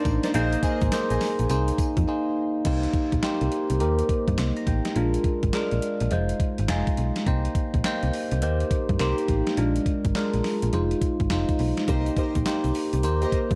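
A bright, bell-like tine electric piano with a phaser sits up front and carries the accompaniment across this short, punchy cut from a longer new jack swing R&B track in C minor, moving at 104 BPM with a sixteenth-note swing. Beside it, a snappy FM slap bass with a metallic, fast attack that quickly decays holds the low end. A clean 12-bit drum machine drives the groove with a thumpy kick, a medium-tuned snare, hi-hat, handclaps, tambourine and crash, its sampler-style sound given a tape-like glow and small-room character. Lush, bowed symphonic strings with vibrato and portamento add expressive stabs through a digital delay at the opening and again from 11.9 s, while a faint, grainy egg shaker appears alongside them. After a brief break at 2.1 s, the harmony cycles through Cm7, Bb7 and Fm7, and the light reverb and dark production keep the slick feel polished.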